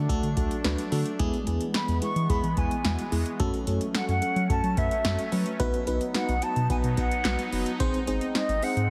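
Synth-pop with a melancholic, cool mood, this short cut from a longer piece rides a straight 4/4 groove from an up-front electro analog drum machine with a deep kick, punchy snare, handclaps and metallic hi-hats, over a round, dark analog bass and sustained chords from a bright, detuned sawtooth pad with chorus. A mellow FM electric piano with tremolo and phaser fills in the accompaniment as the harmony moves from D through E, F#m and B to G#, and an airy, distant concert flute enters at 1.7 s, carrying an expressive melody with vibrato and tape echo. The whole mix sits in a moderate concert hall reverb and has a heavily compressed, radio-style sound.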